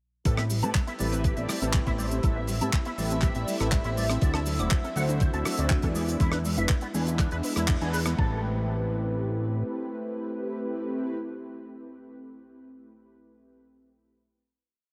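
Groovy and cosmic, this short nu-disco piece moves at 121 BPM in a straight 4/4 in A dorian, running through a single drop from 0.3 seconds before settling onto a held final chord at 8.2 seconds. An overdriven, thumpy electronic kick sits up front with a four-on-the-floor pulse, joined by a dry, damped 70s kit with a rolled-off top carrying a disco backbeat of handclaps, rim clicks, cabasa and open and closed hi-hats. Underneath, a fat, detuned analog bass with a saturated, wave-folded edge and a filter sweep drives a dotted rhythm, while mellow, brassy synth chords in a dotted pattern add chorus, phaser, delay and sidechain pumping, and ring on over the final Am9 until 11.2 seconds. Higher up, a lush unison pad holds a bright high note in the background, a very quiet, soft round pluck spins a 16-step arpeggio, and a clean, twangy electric guitar through an envelope filter repeats a 16-step riff with ensemble chorus and delay. 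The chords move from Am9 to D7 and E7, with a band accent at 7.7 seconds, and the whole mix is dreamy and soaked in a moderate cathedral reverb.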